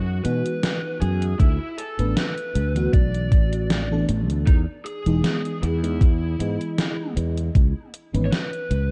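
A growly, punchy fretless electric bass sits up front under this faded, nostalgic vaporwave excerpt at 78 BPM, its sustaining tone thickened by tube saturation and a subtle chorus, while a dark, overdriven lead guitar through a small cranked amp carries the picked melody with tape echo. A lush, dreamy FM electric piano with a soft pad layer and analog chorus moves through F#13sus4, D69, Emaj7 and C#m7, over a gated 80s drum machine with hi-hat and gated-reverb snare. A thumpy electronic kick enters at 1.4 seconds, all within a dark, close production.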